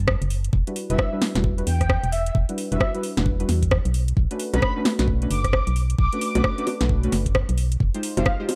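A hollow, dark, organ-like FM bass opens this skippy, late-night two-step UK garage excerpt at 132 BPM with a swung 16th feel, quickly joined by a knocking electronic kick and an up-front garage kit of cracking snare, metallic hi-hats, rim click and bongos, while soft, full-bodied chord stabs with chorus move from Em9 to Bm9 and a breathy, flute-like synth lead with vibrato, ensemble chorus and delay floats above from 0.9 seconds, all set in a digital ambience.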